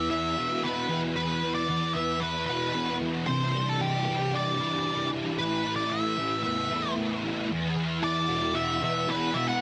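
Rock with a hazy, brooding mood, cut from a longer piece and moving in a straight 4/4 feel. An octave-fuzz lead guitar carries the melody throughout, its dark, picked tone thickened by distortion and trailed by analog delay. Beneath it, a double-tracked fuzz guitar plays the riff from low to middle register, a warm, heavy sound given extra body by ensemble chorus. Both guitars sit up front and play together from start to finish, moving through suspended and added-ninth chords before returning to Esus2 at 7.5 seconds as a new section begins. Light reverb and a digital ambience surround the pair, while the dense, heavily limited modern master keeps the sound packed and pressing forward.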